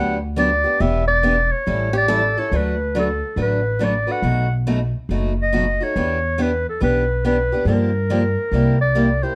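Charming and lively, this short cut from a longer acoustic string swing piece moves at 140 BPM with a swung feel in D major, tuned slightly low with A4 at 437 Hz. A mellow, up-front clarinet carries the solo melody with a subtone, light vibrato, soft attack and scooped notes, over a boxy parlour-style steel-string guitar picking the accompaniment and a woody, thumpy pizzicato upright bass. A second picked swing guitar adds a brief line from 1.9 to 2.5 s, all set in light reverb with a dark production as the harmony moves from Gmaj7 through D6 and B7 to a closing C9.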